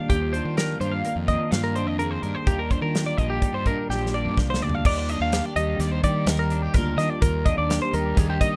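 A straight 5/4 pulse at 126 BPM drives this playful, bright math rock and midwest emo excerpt in Eb major, where two twangy, compressed twelve-string electric guitars, one picking accompaniment through analog chorus and the other picking high arpeggios through digital delay, ride over a growly fuzz-overdriven fingered bass and an airy, up-front studio drum kit with a tight kick, moving from Cm11/Eb to Ebmaj9 in a dry, rough home-demo mix, with a drum fill at 3.9 seconds leading into a new section at 4.8 seconds.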